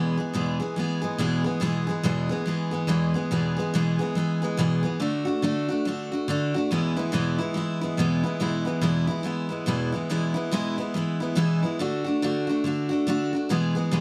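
A dark, roomy studio sound with a short wet reverb frames this heartfelt, down-home country piece, cut from a longer work. A lone picked steel-string dreadnought acoustic guitar sits up front, bright and full-bodied with audible finger squeak, swinging its eighth notes at 142 BPM in 4/4. Moving between E and D in E mixolydian, it plays a single phrase twice across the 14 seconds, the second pass beginning at 8.4 seconds.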